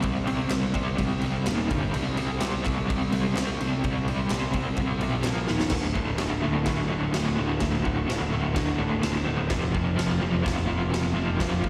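A dark, double-tracked overdriven guitar riff with tremolo and slapback echo opens this swaggering, raw garage rock fragment, up front over a punchy fuzz bass and a gritty, saturated drum kit with a pumping stone-room sound, while crisp group handclaps sit in the background from 0.5 to 5.4 seconds, a drum fill at 5.5 seconds leads into the second section, and the whole band comes across as a live gig heard through the venue's PA in a recital-hall reverb.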